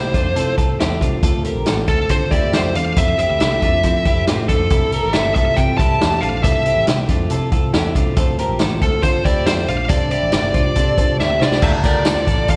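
This bright, nostalgic stretch of jangly indie pop opens with a dark, fuzz-distorted lead guitar carrying the melody up front, colored by slapback echo and digital delay. Beneath it, a twangy, compressed twelve-string electric guitar plays arpeggios, and a fingerpicked, plugged-in steel-string acoustic guitar sits in the background. A round, foam-muted vintage electric bass anchors the low end, while a vintage drum kit joins almost at once with a punchy kick, a medium-tuned snare, hi-hat and dusky crash cymbal, its rolled-off top giving it a mellow, small-room character. The harmony moves through Fmaj7, Dm7 and C6, reaching Csus2 before a drum fill at 11.2 s leads into a Dm chord at 11.6 s, where a glockenspiel played with soft plastic mallets adds a ringing, bell-like note in the background alongside a very quiet, jingly tambourine. The performance sounds like a live gig heard through a venue's PA, with light recital-hall reverb.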